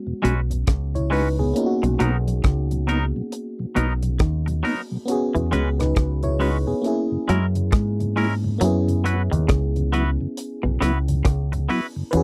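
A deep, round dub bass sits up front with a tight, damped 1970s drum kit of kick, hi-hat and rim click in this smooth, romantic lovers rock reggae excerpt at 68 BPM with a swung feel, where a twangy guitar riff with analog chorus, a second twangy guitar playing stabs, a glassy, bell-like FM electric piano and a mellow tonewheel organ with slow rotary speaker in the background move over chords such as E69, Bmaj7 and F#9 in a dry, close 1970s-style studio sound.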